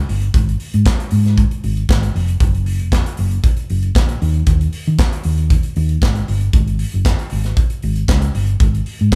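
A dark, round hollow-body short-scale electric bass, played with the fingers and sitting up front, carries this sultry, driving disco excerpt at 116 BPM in a straight 4/4, moving between F1 and Eb3. An airy, polished studio drum kit shares the foreground with a punchy kick, a medium-tuned snare, hi-hat and handclaps. The pair sound like a band playing live in one room, with light reverb, through the roughly 9-second clip cut from a longer piece.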